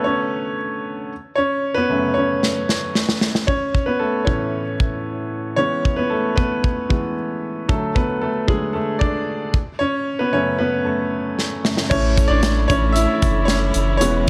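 A straight 4/4 pulse at 114 BPM drives this hopeful piano-driven pop excerpt in A major, where a clear, up-front grand piano plays alone from the start, a punchy modern studio drum kit with a rolled-off top enters at 2.4 seconds with a fill, and at 11.9 seconds a deep, round analog bass with a filter sweep arrives as a lush, bowed string section with vibrato sits in the background, all inside a small room with light reverb.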